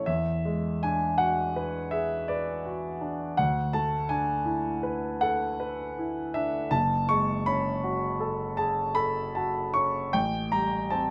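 Close, detailed microphones and a light reverb give this short fragment of impressionist solo piano a warm, polished sound, with the grand piano present and up front. The mood is serene and hazy. At a slow 54 beats per minute in a 9/8 lilt, the piano moves with rubato and uneven beats across a span from F#1 to C#6, drifting through E9, D6/9 and F#m(add9) before settling on Am7 at 10.2 seconds.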